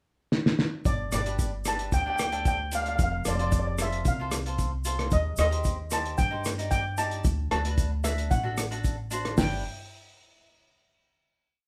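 A muffled, cloth-damped drum kit opens this short, sunny calypso with a fill at 0.3 s, its fat snare, tight kick and gritty, saturated lo-fi character setting up a carefree groove. At 0.9 s a shimmering steel pan arrives up front with airy hook phrases, joined by a woody pizzicato upright bass playing root and fifth in a two-feel, a grainy, mellow tube shaker and, moments later, a crisp cavaquinho picking triad chords. The band plays live in one modest studio room, and the verse moves through G, F, Cm/Eb and D before settling on a final G chord at 9.4 s.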